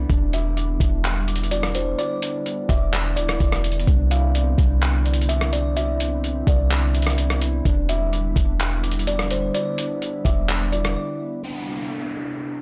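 Atmospheric cloud-rap hip hop at 127 BPM in a dreamy, floating half-time 4/4 groove, where a woody, ringing kalimba melody drifts through a low-pass filter and digital delay over a glassy, ethereal FM pad of sustained Em7 and Cmaj9 chords with ensemble chorus and sidechain pumping, a dark, clean electric guitar arpeggiating in the background through spring reverb, a deep, boomy sine 808 bass and a muffled, pitched-down sampler drum kit of thumpy kick, handclaps, hi-hat and rim click up front, all in a blown-out, overdriven mix with little reverb, before the drums and bass stop at 11.0 seconds and an electronic downlifter and filter sweep close out this fragment of a longer piece.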